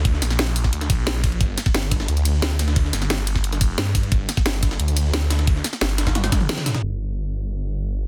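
A straight 4/4 groove at 177 BPM drives this dark, futuristic stretch of technical drum and bass in G minor, cut from a longer piece. Up front, a knocking electronic kick sits under a layered, produced kit whose cracking snare, hi-hat, ride, tambourine and toms are low-pass filtered within a small room ambience. Further back, a gritty, pitched-up jungle sampler-style kit adds compressed hats and a medium-tuned snare, thinned by high-pass filtering and re-recorded in a small room. Carrying the low end from G1 to G2, an aggressive, snarling saw bass growls with detuned unison layers, a sine beneath, a moving notch and a saturated, bright edge. The drop runs into a drum fill, a short break and a band accent at 6.5 seconds. The kick drops out at 6.4 seconds and the kits stop at 6.8 seconds, and the bass carries on alone through a filter sweep until 8.1 seconds. It all sits in a dense, heavily limited modern master with digital ambience.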